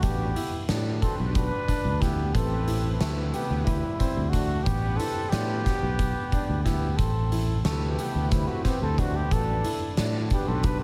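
Progressive instrumental band music in 7/8, driving and brooding, built over a looping Em7/A to Am7 progression in this short cut from a longer piece. A dark, smooth-topped trumpet with light vibrato carries the classical-style melody while a mellow, distant flugelhorn plays a second line beneath it, both touched by slapback echo and digital delay. Up front, a growly fretless electric bass and an oversized, low-tuned drum kit with a fat snare and punchy kick drive the pumping stone room; in the background sit a brassy, detuned sawtooth analog pad with chorus and a clear grand piano whose intimate arpeggios, with audible action noise, run from 0.4 to 10.4 seconds.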